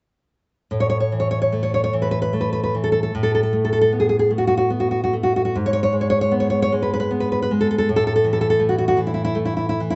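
This romantic solo classical guitar piece is a tender, warm fragment of a longer work, unfolding slowly in 6/8 at 50 BPM in dotted quarters with uneven, rubato beats in A major. The fingerpicked nylon-string guitar sits up front with a deep classical tone and audible finger squeak, playing from 0.7 to 10.0 seconds across a range of G#2 to C#5 and moving from A5 through F#madd11/A and G#madd11 before settling back on A5 at 7.9 seconds. Moderate studio reverb gives the intimate, live-in-one-room sound a gentle bloom, while a rolled-off top end keeps it mellow.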